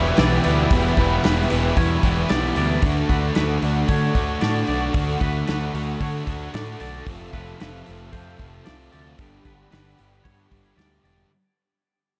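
Steeped in dark, reverb-washed studio sound and fading out throughout, this blissful, hazy shoegaze and dream pop rock fragment at 113 BPM in G lydian moves from Em7 through Dmaj7 and Fmaj7 to Gmaj7 as a loose small-room indie drum kit with a tight kick enters at 0.2 s beneath a growling, round overdriven bass; a dark overdriven guitar riff trails reverse reverb, a thick fuzz guitar adds a distorted riff with subtle chorus, and a crunchy double-tracked guitar riff drops away at 2.8 s, while a twangy, scooped clean guitar traces arpeggios through lush chorus and tape echo over a mellow, detuned sawtooth analog pad holding sustained chords.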